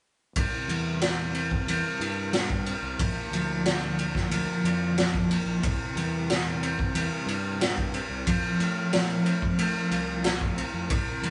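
A hazy, live-in-one-room sound with moderate studio reverb and a dulled top end frames this short psychedelic rock excerpt, which runs from 0.4 to 11.3 seconds. The raw garage drum kit sits up front, mid-forward and gritty, with a punchy kick, a medium-tuned snare and ride cymbal carrying a straight 4/4 feel. Beneath it, a fuzz-laden fingered electric bass adds a dark, round, overdriven low end. A clean, picked electric guitar plays a shadowy riff through tremolo and a low-pass filter, with a filter sweep running across its whole part for a kaleidoscopic shimmer. The harmony moves from C to Bb, back to C, and lands on F.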